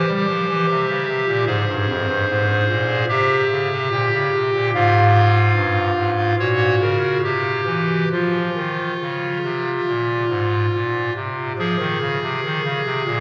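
Solemn and grave, this short classical chorale-style fragment cut from a longer piece features a solo pipe organ on a hollow, up-front clarinet reed stop with baroque voicing and chiff, moving in a free rubato through dark minor harmonies to a stark open chord at 8.1 seconds, all bathed in a long cathedral reverb and colored by the worn, warbling pitch drift of old cassette tape.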